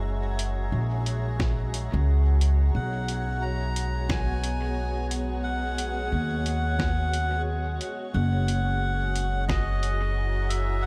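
Ambient dub at 89 BPM in F# mixolydian, spacious and peaceful, this excerpt from a longer piece sets a woody, thumpy upright bass up front against a blurred granular cloud pad holding F#9, B6 and F#13 chords and a glassy, chorused harmonics texture in the background, while a muffled lo-fi sampler-style kit with dub echo on its hi-hat and fat snare enters at 0.4 seconds, a deep tape-warm electronic kick joins at 1.4 seconds, and a reedy, breathy melodica with dub echo takes the melody from 2.8 seconds.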